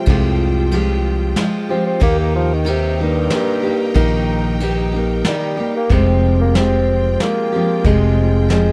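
Dark, softly reverberant production frames this wistful, melancholic acoustic folk fragment in F minor at 93 BPM in 3/4, where a warm bassoon with light vibrato carries a classical-style solo melody through the first 5.9 seconds over full-bodied, up-front picked steel-string acoustic guitar, a round fingered electric bass, a vintage brush kit with dark cymbals and a punchy kick, and lush, bright bowed strings holding sustained chords as the harmony moves from Fmadd9 to Eb and back.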